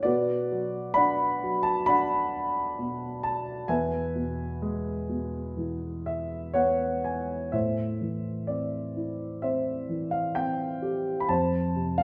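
Melancholic and dark, this lyrical classical solo piano passage, cut from a longer piece, drifts at a rubato 64 BPM on a mellow, boxy, up-front grand piano spanning E2 to B5, moving from B minor and E chords through a fill at 5.6 to 7.5 seconds before settling into A minor with Am7 and F, all bathed in a wet recital-hall reverb.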